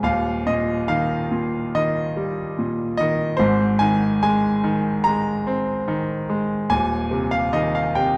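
Flexible rubato phrasing stretches and relaxes the 4/4 metre, giving this short classical passage a lyrical, tender character. A grand piano carries the music alone from 0.0 to 8.2 seconds, its brilliant, bright tone sitting up front with a natural quality, spanning a range from Eb1 up to Bb5. The harmony moves from Eb to Ab at 3.4 seconds before settling on an Eb69 chord at 6.7 seconds. A moderate recital hall reverb surrounds the instrument, while the overall production leans dark and warm. Cut from a longer piece, the passage feels tender and warm.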